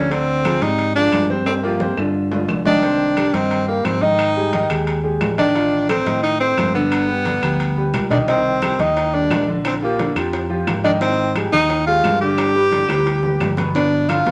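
A clear, up-front tenor saxophone with vibrato carries a passionate, danceable salsa melody at 176 BPM, over a boxy baby grand piano, a dark, punchy fingered electric bass, bright hard-handed congas, ringing vintage timbales, woody claves and soft, round bongos that enter quietly at 8.3 seconds, all set in a wet studio reverb with drum fills and a minor-leaning progression that lands on G7 at 13.7 seconds.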